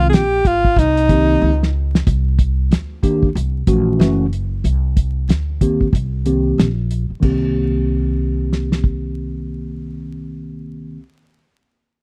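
A clear, close-miked alto saxophone with vibrato opens this smoky, mellow jazz-hop excerpt over a chorused, low-pass-filtered tine electric piano and a woody, thumpy pizzicato upright bass, with a cloth-damped, thuddy drum kit joining almost at once on swung sixteenths, its fat snare, tight kick and dark cymbals up front. The saxophone falls silent at 1.7 seconds as a drum fill leads into a filter sweep on the electric piano starting at 2.1 seconds, while the bass and piano carry on through minor-seventh and ninth chords. The dry, close 1970s-style studio sound sits in a small room with vinyl crackle.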